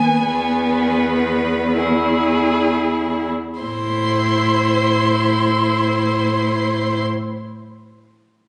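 A focused, distant violin carries the melody in its upper register, its bowed line touched with vibrato in this elegiac, melancholic excerpt from a slow romantic movement for string quartet in A minor. A second violin sits close and soft-edged beneath it, shaping an expressive inner line with gentle attacks and portamento. The viola supplies a rich, smooth and even accompaniment from further back, while an up-front cello anchors the bass with a clear, steady tone. The tempo is very slow, around 31-40 BPM in 4/4, with rubato phrasing that slows over the opening, as an E chord resolves to A minor at 3.6 seconds and a new section begins. The quartet sounds as though captured on a phone in the room, with moderate concert-hall reverb blended with club reverb and compression.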